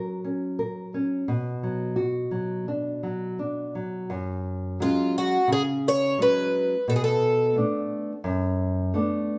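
A picked twelve-string acoustic guitar carries the melody from 4.8 to 7.5 seconds, its octave-doubled, shimmering tone sitting up front with a boxy, archtop character and audible finger squeak. Beneath and around it, a small, thumb-plucked nylon-string guitar provides the accompaniment throughout, also close and present, with its own touches of finger squeak. This is a mournful, longing fado-style ballad in 4/4 at 87 BPM, played with a rubato feel and tuned slightly below standard pitch. It opens in B harmonic minor, moving through F# and Bm, then shifts to F# harmonic minor at 4.1 seconds, where F#sus2 gives way to Bm7. The two guitars were captured playing live in one room, with a moderate large-studio reverb surrounding this brief cut from a longer piece.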